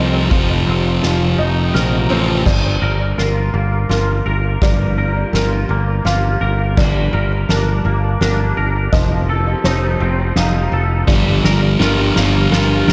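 Brooding and cathartic, this post-rock excerpt moves at 84 BPM in 3/4 and G minor, with a clean, compressed twangy electric guitar and a muted, mellow upright piano carrying arpeggios, the piano tucked in the background with audible action noise, both parts trailed by delay and the guitar shimmering with ensemble chorus. A growly, punchy picked bass sits up front, while a sludgy overdriven guitar riff appears at the start, drops out at 2.4 s and returns at 11.1 s. From 2.5 s a build-up and drum fill take hold on a soft-mallet kit with a fat snare and boomy kick in a big room, all within a dreamy mix soaked in plate reverb.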